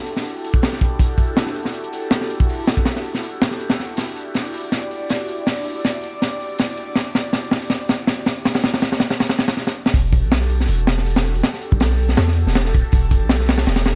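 Drum and bass with a jungle edge, this nostalgic, raw excerpt runs at 161 BPM in E minor, with an airy, breathy pad holding an Em11 chord through chorus and phaser while a crunchy, saturated breakbeat kit with a punchy kick and high-tuned snare drives the build-up. After a drum fill and a brief stop, the drop arrives at 9.9 seconds, where a deep, sine-toned 808-style bass enters up front with long, decaying notes. The dark production sits in a small room with light reverb, the drums gritty and rolled-off on top.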